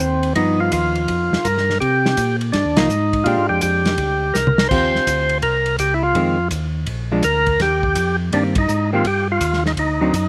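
A thick, lightly overdriven tonewheel organ leads this soul jazz organ trio excerpt, its percussive key click and third-harmonic percussion sitting up front through a slow rotary speaker and a short slapback echo as it carries the melody in a middle register. Beneath it, a second tonewheel organ supplies the bass line with a mellow, round tone, its clean sound shaded by chorus vibrato and the same slow rotary turn. A hollow-body electric jazz guitar, dark and clean and played with the fingers, fills in the accompaniment from 0.4 seconds. The drum kit has a tight kick, a medium-tuned snare and dark cymbals with a rolled-off top, and it adds a short fill around 4.3 seconds, while the whole band hits accents at 2.7 and 8.5 seconds. The swung groove moves through altered dominant and rich extended chords with a soulful, greasy feel, and the dry, close sound leaves every part present.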